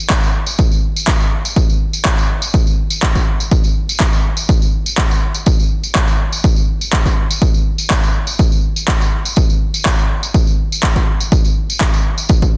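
A dense, heavily limited modern master with digital ambience carries this soulful, bittersweet house excerpt at 123 BPM in a straight 4/4, where a punchy analog electronic kick drum sits up front alongside electronic handclaps, both re-recorded in a large room, while a compressed, saturated tambourine runs underneath from 0.1 seconds until the kick and tambourine stop at 12.5 seconds, the claps having dropped out at 11.9 seconds.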